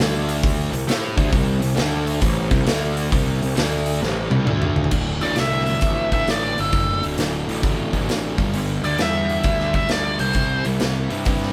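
A nasal lead guitar with a parked wah stands out up front, playing an overdriven, warm-edged melody between 5.2 and 10.6 seconds in this gritty, driving blues rock and southern rock excerpt at 133 BPM in 4/4, swung on the eighths in D mixolydian. Beneath it, a dark, double-tracked fuzz guitar drives a compressed riff that alternates D5 and C5 power chords before the harmony moves through D, G and C in the second section, which begins at 4.9 seconds. A growly, bright fuzz bass adds overdriven weight in the low register, while a big acoustic rock kit with punchy kick, medium-tuned snare, toms, hi-hat and bright crash cymbals sits forward and plays a fill from 4.0 to 4.9 seconds. Soft, flute-like tonewheel organ chords sustain in the background through a slow rotary speaker and chorus vibrato. The band sounds as if playing live together in one room, with a moderate stone-room reverb around them.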